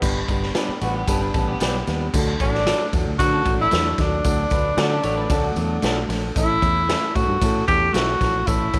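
Lightly reverberant, this danceable, uplifting 1960s-style soul excerpt rides on a saturated, gritty, punchy garage drum kit up front, a foam-muted fingered electric bass, a boxy dark grand piano with audible action noise, and a jingly tambourine, while a twangy, slightly broken-up electric guitar through a small old amp plays stabs and a clean semi-hollow electric guitar plays a riff in the background, before a breathy, distant tenor saxophone with scooped notes and light vibrato takes the melody up front at 2.4 seconds.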